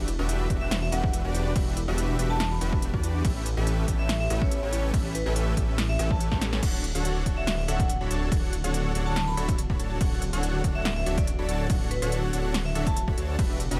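A bright, ringing vibraphone played with medium hard mallets carries the melody from 0.6 seconds, its slow motor vibrato and dub echo giving this playful, sunny future bass piece a metallic sparkle. Beneath it, a huge, compressed supersaw riff and a thick, detuned saw bass pump in time with the sidechain, with the bass sitting up front alongside a punchy electronic kick. A big-room dance kit adds a crisp snare, hats and crash cymbal, both it and the kick carrying an overdriven edge, and the beat moves at 142 BPM in a half-time feel with light swing on the 16ths. A round, tine-like synth pluck, much like a thumb piano, spins quiet arpeggios through chorus and digital delay in the background until 6.6 seconds, just after a drum fill. At that point a soft, breathy pad enters with very quiet sustained chords as the harmony settles from Em9 and A9 onto Dmaj7 in D major. The dry mix holds little reverb, and the clip is cut from a longer piece.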